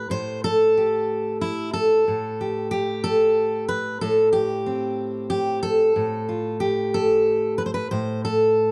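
Set in a three-beat metre with a straight feel, this short folk excerpt for solo fingerstyle guitar is cut from a longer piece and lasts about 8.7 seconds. A fingerpicked steel-string dreadnought acoustic guitar carries everything alone, its fresh strings ringing warm and detailed, with audible finger squeaks bringing the listener close to the player. The mood is intimate and haunting, built on a minor-key harmony that rests on an Am7 chord before shifting at 6.0 seconds to a rootless Fadd9 over A. The guitar spans from its low A2 up to C5, sitting up front in a close, dry recording with little room sound.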